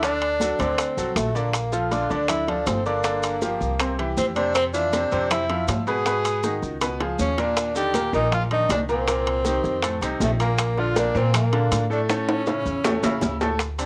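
A passionate, danceable salsa passage at 159 BPM opens with a punchy tenor saxophone carrying the melody up front with light vibrato, beside a brilliant grand piano whose audible action noise and long sustain sit intimately close, both parts colored by cassette tape. Beneath them, a woody, thumpy pizzicato upright bass anchors the harmony as it moves from D7 through Bbmaj7 and G#m7 toward a closing A. A background percussion bed of ringing metal-shell timbales, tight hard-hand bongos and high-tuned soft-hand congas, joined by grainy vintage maracas, adds drum fills at 6.8 and 12.1 seconds, all set in a small room on a homemade cassette recording.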